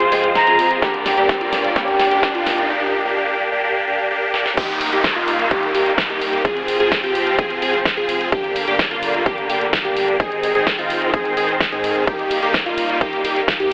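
Uplifting and euphoric, this festival progressive house cut at 128 BPM in Eb major opens with a build-up where a distant, airy jazz flute with delay sings briefly over a dark, boxy fingerpicked parlour guitar, lush bowed strings, a catchy plucky unison lead and a huge, bright supersaw riff colored by phaser, tape and delay, while a riser and downlifter drift in the background and a big-room kit with a huge snare plays a fill. A punchy layered kick arrives at 0.8 seconds, and the drop lands at 4.6 seconds with a deep, saturated sub bass underneath, the chords moving from Eb through Fm, Gm and Ab. The pumping parts breathe against the kick inside a huge ambient reverb, with a thin, telephone-like filtering on the whole mix.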